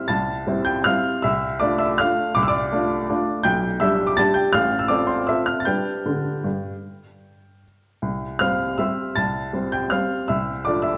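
A clear, woody upright piano sits up front in this elegant, playful classical waltz in C major, played solo in 3/4 with a rubato feel at roughly 146-173 BPM. Its polished tone ranges from deep bass to bright high notes while the harmony moves from C through Dm7/C, G/B, F/A and G before returning home. A lush recital hall reverb and a dark production surround this short fragment of a longer piece.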